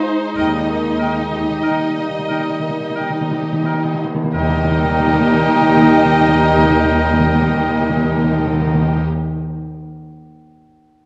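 Hopeful and uplifting, this brief cut from a longer cinematic film score unfolds in a slow, rubato 3/4, easing back over its first 4.3 seconds before moving into a second section. A clear, focused violin section carries the melody from a close position, while a distant, very quiet second violin section and a lush viola section in the background fill in beneath it, with a mellow, tight French horn section holding sustained chords. At 0.4 seconds the texture blooms on an Eb chord as the cello and double bass sections settle onto a lush, bowed bass, and woodwind lines join: a present oboe, a clarinet in the background and an airy small flute group that sounds far off. Close and dry up front, the timpani, played with medium mallets, delivers a fill running from 0.4 to 4.3 seconds. The whole mix sits in the wet reverb of a scoring stage and carries the worn, warbling pitch drift of old cassette tape, giving the orchestral sweep a nostalgic haze.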